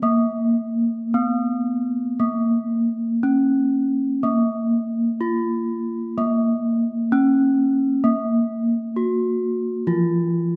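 Two bronze gamelan-type metallophones sound together from the very start of this short, stately fragment cut from a longer gamelan piece in Bb pelog, moving at a slow 54-66 BPM in a straight 4/4. Up front, the melody metallophone rings out with a metallic, bronze-edged tone struck by a wooden mallet, moving between Bb3 and Gb4-20c. Beneath it, in the background, a second metallophone plays the accompaniment in a lower register from F3-30c to Bb3, its padded disc mallets giving a mellow, soft sound with a warm, boxy small-room character. That accompanying instrument's paired tuning produces shimmering beats that lend the texture its glimmering quality. The whole performance sits in a reverberant recital hall with a long 1.9-second decay, and a new section begins at 8.1 s before the fragment ends at 10.6 s.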